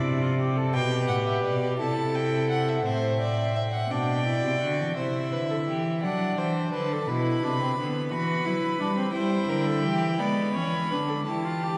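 A lilting, straight 6/8 pulse carries this elegant, lively baroque-style fugue for string quartet, cut from a longer piece. The cello sits up front with a close, reedy gut-string bass. The second violin, also close, holds a second line while a distant viola with light vibrato fills in beneath it. At 0.7 s the first violin takes the high melody with its own light vibrato, and the harmony turns toward darker diminished chords after 5.0 s, all bathed in a long, dark church reverb.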